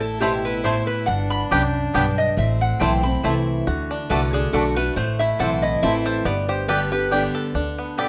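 A swung 3/4 lilt at 139 BPM drives this rustic bluegrass excerpt in A dorian, where a nasal, metallic slide lap resonator guitar and a twangy, percussive banjo (entering at 0.2 s) share the melody over Am, G and D chords, a biting, lightly vibrato fiddle adds a second line until 3.5 s, mellow double-stringed mandolin stabs punctuate, a bright, full-bodied dreadnought guitar sits up front in the accompaniment, and a thumpy, woody pizzicato upright bass anchors the low end, all in a moderate large-studio reverb.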